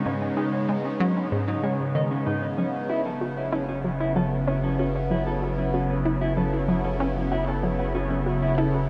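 A bright, morphing wavetable pad sits up front with phaser and its own reverb, sustaining chords over a detuned sawtooth pluck riff with chorus and delay, dark, clean, fingered electric guitar arpeggios with delay, and a very quiet pulsing gated texture, opening this excerpt of mysterious, expansive space music at 95 BPM in 4/4, tuned to A4 = 435 Hz. At 2.6 seconds the harmony moves from G#sus4 to F#m7 as a deep, round sine sub bass enters on F#1. A huge ambient reverb and cassette tape character soak the dreamy mix.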